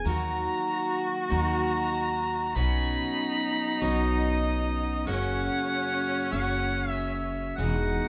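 Pastoral and peaceful, this short acoustic folk passage in 6/8 sets a warm, lightly vibratoed, classical-style harmonica melody over a bright, shimmering picked twelve-string guitar, while a rich, focused bowed cello carries a distant second line and a woody, dark pizzicato upright bass sits up front, the chords moving from D#m through Bsus2 to F# in a moderate large-studio reverb.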